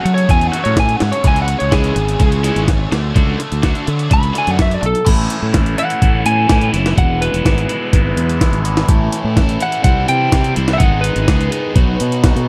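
Indie rock at 126 BPM in a straight 4/4, carefree yet wistful, where a twangy, lightly driven lead guitar with digital delay solos for the first 5.1 seconds over a bright overdriven riff guitar with phaser, a scooped high-gain guitar with distortion and analog chorus that stops at 4.8 seconds, a round, dark fuzz bass up front, and a gritty, pitched-up jungle sampler-style kit with a thumpy kick and high-tuned snare whose kick and snare drop out at 4.8 seconds, all in a dry sound as chords move from F#m7 through Dmaj7 to A, E, C, G#m and B in this cut from a longer piece.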